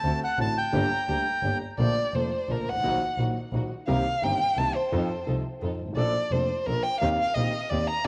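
A rubato 3/4 pulse at 172 BPM carries this sultry, melancholic tango in Bb major, cut from a longer piece. A reedy, dark bandoneon sits up front with the melody through an analog delay until 1.6 s, while an expressive bowed violin, full of vibrato and portamento, plays a second line and takes over as soloist from 1.8 s. Beneath them, an intimate concert grand piano with deep bass, audible action noise and a vintage cast provides the accompaniment, and a single bowed double bass adds a biting, nasal, earthy low end. A very quiet studio string section contributes bowed ensemble stabs. The harmony moves from D7 and Gm into a passage built on Bbmaj7, Ebm/Bb, Cm7 and F7, all bathed in a lush hall reverb with a homemade cassette character.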